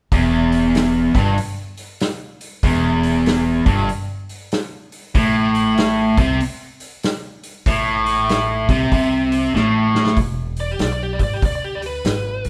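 A double-tracked, overdriven electric guitar riff sits up front in this gritty, driving blues rock and southern rock cut at 96 BPM with a swung 4/4 feel, moving from E minor to A minor over a woody, growly pizzicato upright bass and a punchy vintage drum kit with a rolled-off top and a pumping small-room sound, until a drum fill leads into an E chord at 10.2 seconds and a biting, picked lead guitar solo enters at 10.6 seconds, all captured as a band playing live in one lightly reverberant room.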